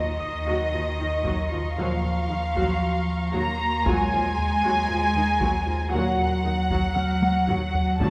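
Heard through a moderate scoring-stage reverb, this mysterious, tense suspense cue cut from a longer film score sets veiled, con sordino violin sections carrying the melody, a lush second line and a high background texture over a muted viola accompaniment, a close cello line and very quiet double basses, while a deep, punchy sine sub bass drone, distant dark French horns and clear trombone chords hold underneath, a ringing thumb-plucked harp glints from 0.2 seconds, and dry, heavy-stick taiko drums enter at 0.2 seconds before a fill at 7.0 seconds.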